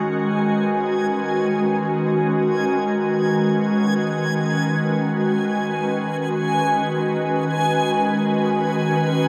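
In free time, this serene, melancholic ambient excerpt rests on a soft, organ-like pad of pure, detuned sustained chords, bright and up front with ensemble chorus and a slow attack, while a reversed, granular, dreamy swelling texture hovers high above, everything bathed in a huge reverb within a dark, warm production.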